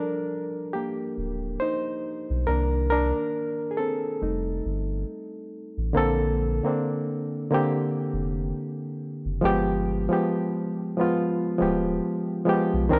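Over a lazy swung sixteenth-note lilt in four, this mellow, dreamy lo-fi hip hop excerpt opens with a barky, reedy electric piano heard as if through its built-in speakers, playing accompaniment chords like Ebmaj7 and Cm9 up front, before a deep, round dub sub bass enters at 1.2 seconds, all set in a moderate plate reverb with a cassette-tape tint.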